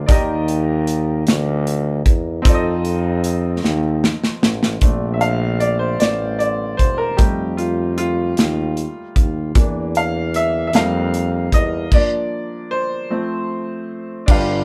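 Jubilant and hopeful, this slow gospel passage in 6/8 at 51 BPM pairs a clear baby grand piano with a present, up-front tuba bass and an airy, polished acoustic drum kit with a punchy kick, crash, hi-hat and snare, all playing live in one room with light reverb, as a drum fill at 3.6 seconds leads into a piano solo from 4.8 seconds, and a stop at 11.9 seconds lands on a Bb over F chord.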